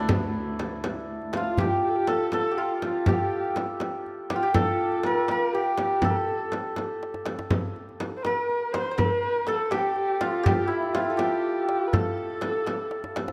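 Close, detailed microphones in a moderate concert hall capture this passionate passage of Persian modal ensemble music in 6/8, cut from a longer piece. A shimmering, ringing santur carries the melody up front. Meanwhile, a lush symphonic cello section holds a low drone only until 1.6 seconds, and a dark, boxy kamancheh enters at 1.3 seconds with vibrato and portamento as an expressive second line. Beneath them, a tight, dry tombak and a small, saturated frame drum, both played with hard hands, add drum fills around 7.0 seconds and again at the close.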